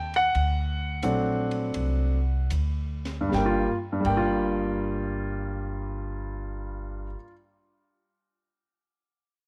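Swinging and smoky, this short excerpt from a longer jazz piano trio piece sits in G minor at 70 to 92 BPM in 4/4, with a swing feel on the eighth notes. A concert grand piano carries the melody from G2 to G5, its tone natural and up front with a deep bass register. An upright bass, plucked and woody on steel strings, also sits close in the mix, moving between G1 and Eb2. A compact cocktail drum kit, dark and smooth with a high-tuned snare and a punchy kick, adds crash, hi-hat, ride and snare until about 4.2 seconds. The tempo slows over the opening 3.3 seconds, where a D7 gives way to Gm7 as the second section begins, all set in light reverb and small room ambience.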